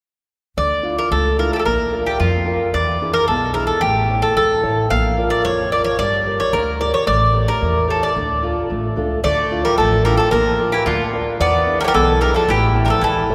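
An up-front, metallic Greek bouzouki with octave-doubled strings carries the melody in this bittersweet, cool Greek folk excerpt in 2/4, backed by a dark, boxy fingerpicked archtop guitar with audible finger squeak and a woody, thumpy pizzicato upright bass, while a second bouzouki enters with a supporting line at 9.2 s, the band heard in a church or concert hall drenched in long, wet cathedral reverb.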